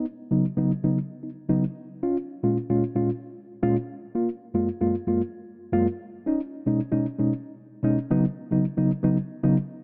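A reedy, mellow electric piano plays alone from 0.0 to 9.6 s, up front and sounding through its built-in speakers with a fast tremolo. It moves through C#7sus4, A#m7, F#maj7 and B6 before returning to C#7sus4 at 8.1 s, in a disco clip at 114 BPM in straight 4/4 with a celebratory, glamorous mood. The production is dark, with light reverb and digital ambience, and the tuning sits slightly sharp at A4 = 441 Hz.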